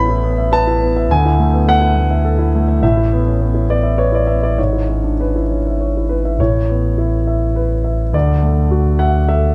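Intimate and hopeful, this short neoclassical passage from a longer piece moves in a rubato 3/4 at about 103 BPM in A major, with a dark, mellow concert grand up front, its action noise audible, playing accompaniment over chords that drift from Asus2 to Dadd9 and E6/G# while a punchy sub bass with a pitch-drop attack and sustained, sine-like tone sits beneath it, all captured by close, detailed microphones with light reverb.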